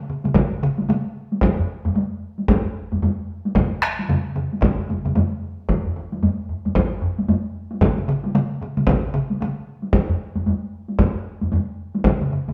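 Taiko ensembles sound almost at once, three parts entering within the first moments: one struck with hard sticks and carrying a vintage, band-limited tone, another also played with hard sticks, close and dry, and a third, hit with heavy sticks, carrying a small-room character. At 1.6 s a fourth taiko part joins, compressed and saturated, and every drum part sits up front in a powerful, ceremonial Japanese traditional groove with a swung sixteenth-note feel. The group plays live together in one space, wrapped in a generous large-studio reverb, in this 12.5-second excerpt from a longer piece.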